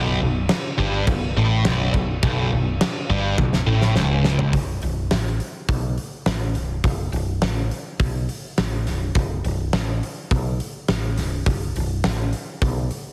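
Aggressive and heavy, this hard rock excerpt moves at 104 BPM in a straight 4/4, opening on a sludgy, overdriven, double-tracked electric guitar riff that sits up front over a dark, round fretless bass with a woody, hollow-body tone. A big acoustic drum kit with a fat snare and punchy kick joins at 0.5 s, and a fill from 3.4 to 4.5 s carries the music into a new section, where the guitar stops and the bass and drums continue until the cut at 13.0 s. The sound is heavily compressed in a radio style, with light reverb and studio ambience, while the kit itself has a big-room character.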